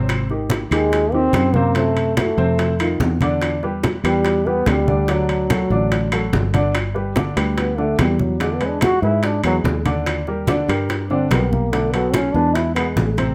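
Light reverb lends this short Afro-Cuban jazz passage a gentle sense of space, with the piano, bass and trombone placed up front. At 144 BPM in a straight 4/4 and in G major, the mood is sunny and danceable. A breathy trombone carries the melody from 0.7 seconds, mellow and whispered with a light vibrato and a soft attack, then takes a solo from 6.7 seconds over chords such as G6, E7 and Ebmaj7. Beneath it, a baby grand piano accompanies with an intimate, natural tone, short sustain and audible action noise, while a foam-muted fingered electric bass adds a dark, round low end. Bright, damped congas struck with hard hands and low-tuned bongos sit in the background alongside woody, distant claves, and ringing metal-shell timbales add a vintage, band-limited colour.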